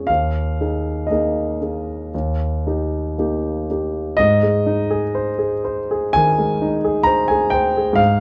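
A dark, lightly reverberant sound places a warm grand piano up front, its short-sustained notes spanning Eb2 to Bb5 in this brief cut from a longer piece. It is a tender, dreamy romantic nocturne in 4/4, moving with rubato at roughly 56-67 BPM. Harmony drifts from Ebsus4 to Eb, and the opening phrase returns at 4.2 s over an Ab chord.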